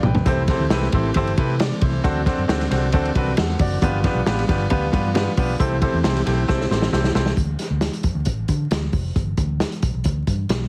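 A straight 4/4 groove at 135 BPM drives this uplifting, uptempo 1960s-style soul excerpt in C major, with a vintage drum kit up front, its kick punchy and its cymbals dark, opening on a fill and rolling into another fill from 6.5 to 7.4 seconds, while a round, foam-muted fingered electric bass runs underneath to 10.7 seconds. A brilliant, woody upright piano, close enough that its action noise is audible, comps through C6, D7 and G7 chords alongside very quiet sustained chords from a mellow, lightly overdriven tonewheel organ with third-harmonic percussion and fast rotary, both dropping out at about 7.4 seconds as the harmony moves to Dm and G. Light reverb and a heavily compressed, radio-like sound with vinyl crackle give the whole cut a period feel.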